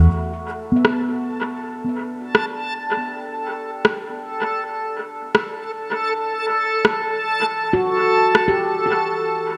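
An echo-heavy mix sits in a moderate echo-chamber reverb, giving this hazy, spacious ambient dub passage at 80 BPM in E minor a deep sense of space. Up front, a ringing handpan played with soft fingertips spins mellow, meditative arpeggios through tape echo and a low-pass filter, with a filter sweep running across it. Beside it, a reversed, granular swelling texture holds a bright, dreamy A4 from 0.1 seconds, while a dark, detuned sawtooth pad with a sub octave, wave folding and ring modulation sustains an Em9 chord in the background, its slow attack and long release colored by chorus. An overdriven electronic rim click enters at 0.8 seconds and stops at 8.5 seconds, its dub echo and small-room reverb adding a produced, percussive edge over the straight 4/4 pulse.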